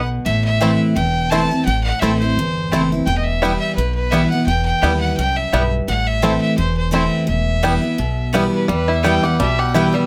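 A swung 4/4 pulse at 171 BPM drives this brisk bluegrass passage in E minor, cut from a longer piece and carrying a lonesome, rustic mood. Up front, a clear, airy-bowed fiddle carries the melody with light vibrato and an intense, boxy edge, while a bright, full-bodied picked dreadnought guitar supplies the accompaniment alongside it. Underneath, a woody pizzicato upright bass holds the low end, and at 0.6 seconds a twangy, percussive banjo joins with fingerpicked arpeggios as a mandolin adds doubled-string stabs. The harmony moves between Am and Em, and a brief new section arrives at 8.7 seconds. Close, detailed microphones and light reverb keep the acoustic sound intimate and crisp.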